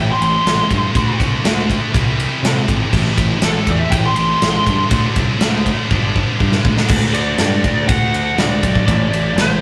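Quiet-loud alternative rock at 121 BPM in 4/4, brooding and angsty, this fragment from a longer piece opens with an overdriven, lo-fi lead guitar soloing over two bright, high-gain rhythm guitars set back in the mix, one of them scooped, while a growly fuzz bass and an up-front big-room drum kit with punchy kick and bright cymbals drive the chords from Am7 through D7, C and G. A drum fill at 5.9 seconds leads into a new section at 6.9 seconds, where the solo and one of the distorted guitars stop, leaving the scooped guitar, bass and drums to move through D and Am while the lead guitar carries on. The rough rehearsal-room sound has moderate studio ambience and tube saturation.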